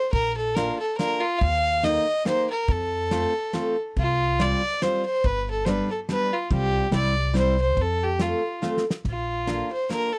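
A lilting waltz in three with a gently swung feel drives this short, jolly alpine dance-band clip, festive in spirit. Up front, a single bowed fiddle carries the melody with light vibrato, its tone earthy and smooth on top. Beside it, a fingerpicked jumbo steel-string guitar fills in full-bodied accompaniment, while a pizzicato upright bass on gut strings gives a woody, dark, thumpy foundation. A loose drum kit in a small room keeps time with tight kick, ride cymbal and a fat snare, and a drum fill at 8.6 seconds leads into a new section at 9.0 seconds that returns to Bb. The chords wander colourfully through Bb, Ebadd9, F, Csus4 and G, and the whole take has a dry, close, 1970s-style studio sound with little reverb.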